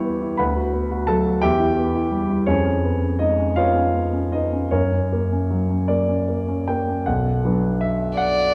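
This is a romantic classical duo for violin and grand piano, yearning and melancholic, cut from a longer piece. It moves slowly at 50-58 BPM counted in dotted quarters, in a flexible 6/8 with rubato, and is tuned to A4 = 439 Hz. The warm grand piano carries the accompaniment from the opening through 8.5 seconds, sitting up front with a natural tone and spanning from B1 to C#6. Its harmony passes through Bm/D, Em, C#7/E# and F# before settling on Bm at 7.1 seconds, where a new section begins. Only at 8.2 seconds does the bowed violin enter, a single player on a focused, clear D5 with vibrato. It sounds both distant and up front, carried by the dark production and a wet recital hall reverb with a 1.6-second decay.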